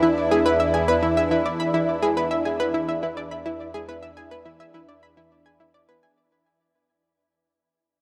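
Expansive and cosmic, this short fading fragment of sequencer-driven ambient space music sets a thick, nasal, detuned unison pad sustaining an E7 chord against a round, bright analog sawtooth pluck riff with a sub octave, both treated with chorus and shimmer reverb, the pluck also carrying delay, inside a huge, wet reverb that lingers for 7.8 seconds.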